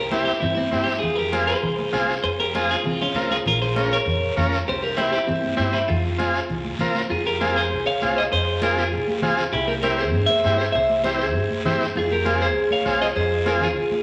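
A bright, twangy clean electric guitar carries the melody up front, treated with spring reverb, over a buzzy vintage combo organ with heavy vibrato, a woody pizzicato upright bass, soft-handed, damped congas in the background and a raspy guiro, in this passionate, driving cumbia excerpt that shifts into a new section at 7.1 s within a large, wet studio reverb.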